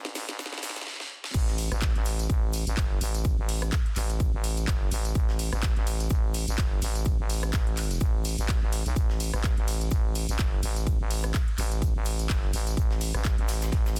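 Swaggering and aggressive, this bass house cut at 126 BPM swings its 16ths over a growling, thick FM bass that sits up front with tube saturation, sidechain pumping and a fast attack. A short build-up with drum fills gives way at 1.3 seconds to the drop, driven by a punchy, tape-kissed electronic kick, a house kit of cracking snare, metallic hats, handclaps, tambourine, rim click, ride and crash, and a very quiet, airy acoustic kit adding hi-hat, shaker and a medium-tuned snare. The sound is dry, dense and heavily limited in a modern master.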